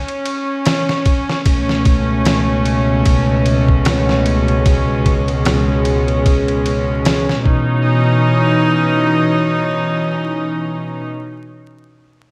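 A clear, floating string section holds bowed chords with a soft attack through a low-pass filter and a filter sweep until 7.9 seconds, moving from Aadd9/C# to a closing C#m9. Alongside, a gritty, pitched-down sampler-style kit of thumpy kick, snare and ride keeps a loose, swung 16th-note trip hop pulse before dropping out at 7.6 seconds, leaving the strings to carry on alone. The hypnotic, melancholic mix is dreamy and soaked in lush hall reverb, with vinyl crackle beneath.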